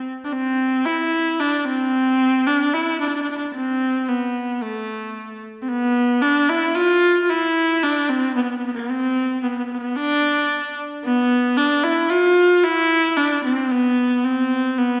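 A lone bowed viola opens this soulful, melancholic Arabic excerpt, singing with a rich, smooth, even tone and vibrato, close and up front. It moves at 112 BPM in 10/8 with a straight feel, tuned to A4 = 438 Hz, and shifts into a new passage at 5.7 seconds. A wet reverb with a 1.7-second tail surrounds the single player, giving the sound the spacious air of a church or concert hall.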